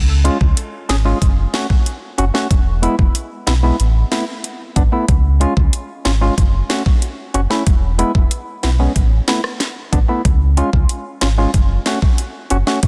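A dense, heavily limited mix with light reverb carries this bouncy, tough dancehall excerpt in F# minor at 93 BPM, where a deep, sine-toned sub bass with octave sits up front from 0.0 seconds beside an electronic afro-pop drum kit with a knocking kick, metallic hats, rim clicks and a sharp, softly clipped snare, while a hollow, mellow organ stab with chorus and sidechain pumping plays percussive, decaying hits over a looping C#, F#m, E, Asus2 progression.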